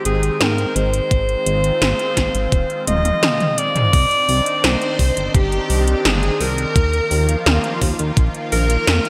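A subtoned alto saxophone carries the melody with delay through this moody, nostalgic synthwave excerpt at 85 BPM in C minor, set over a thick, detuned unison pad with chorus, phaser and sidechain pumping, a glossy pulse-width synth bass that also pumps, gated 80s electronic pad drums with metallic hats and a fill at 2.9 seconds, a thumpy electronic kick entering at 1.1 seconds, and a shimmering vintage string-machine violin line joining at 4.6 seconds, all within a lush hall and bright 1980s-style digital production.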